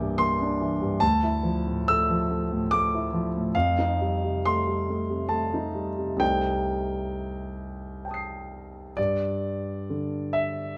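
Classical impressionist solo piano, hazy and nocturnal in mood, unfolds in a three-beat metre with a free, rubato feel. A single concert grand carries the whole passage, its warm tone anchored by a deep bass and spanning from C2 up to C7. The harmony drifts through rich extended colours, moving from C9 to Dmadd9, then F9, and darkening to Cm6 at 6.2 seconds. At 9.0 seconds the music shifts into a new section built on a bare G5 sonority, and the fragment stops at 10.8 seconds, cut from a longer piece. Close, detailed microphones keep the piano up front, while a moderate recital-hall reverb adds a soft halo around each chord.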